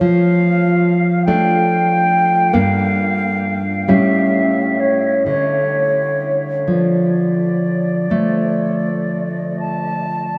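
Set in 12/8 with a free, rubato pulse, this elegiac, melancholic romantic duo for flute and classical guitar is a short passage cut from a longer piece. The concert flute carries the melody in its upper register with a pure, straight tone and tongued notes, its line trailed by a diffuse ambient delay. Beneath it, the nylon-string guitar provides fingerpicked accompaniment in a lower range, its fresh strings giving a warm, acoustic clarity. Both instruments sit up front, while a huge, wet reverb soaks the mix in a dreamy, lingering haze. The harmony moves from Dm/F through Gm7 at 2.5 seconds and A7 to settle on Dm at 5.3 seconds, lending the 10.4-second passage a sorrowful, sighing quality.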